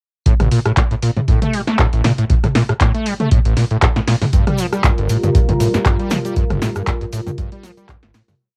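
A four-on-the-floor kick drives this hypnotic acid house piece at 118 BPM in 4/4, with a 55% swing on the sixteenths giving the groove a loose shuffle. The deep, dry electronic kick sits under a punchy analog drum machine whose programmed closed and open hi-hats, snare backbeat, rim clicks, mid toms and handclaps carry a tape-softened character and a short room on the snare, clap and hats. Up front, an overdriven acid bass plays a squelchy, resonant sawtooth riff with accents, slides and filter sweeps, its 12-step loop drifting against the bar through gritty distortion, ensemble chorus and analog delay. A grainy, bright tube shaker joins in the background at 4.3 seconds with hand-played sixteenths as the harmony settles onto Gm7, and a dark, detuned pad with a sub octave swells in slowly at 4.7 seconds, pumping with the kick beneath its chorus. The whole piece is a single driving drop captured as a home cassette recording with light reverb, and it fades out from 5.7 seconds to its close.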